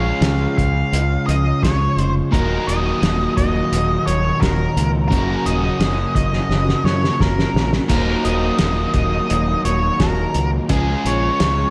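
A dark, fuzz-drenched octave lead guitar with slapback echo carries the melody from the first moment over a double-tracked crunchy overdriven riff guitar, a bright fingered electric bass and a picked parlour steel-string acoustic tucked in the background, before a muffled, cloth-damped drum kit with a fat snare and dark cymbals joins at 0.2 s and plays a fill at 6.5 s in this driving, brooding classic rock excerpt at 86 BPM in Eb minor, moving from Db to Ebm under a lush hall reverb that gives it a big arena sound.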